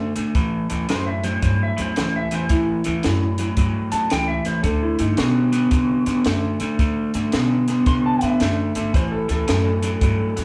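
A wet studio reverb fills this live, in-one-room recording, an excerpt cut from a longer electric blues shuffle with a gritty, rollicking mood, moving at 112 BPM in 4/4 with a swung eighth-note feel and tuned to A4 = 444 Hz. Up front, an electric guitar through a small old amp plays the riff from the start, its picked tone bright, twangy and slightly broken-up. An upright bass played pizzicato on steel strings gives a woody bottom, and a compact cocktail drum kit enters at 0.2 seconds with hi-hat, a tight kick and a high-tuned snare, its dark, smooth sound rolled off at the top. At 0.9 seconds an electric slide guitar comes in as the soloist, its fingered, compressed tone warm with a touch of breakup. The harmony moves from A7 to D9 and back to a bare A7 near the close.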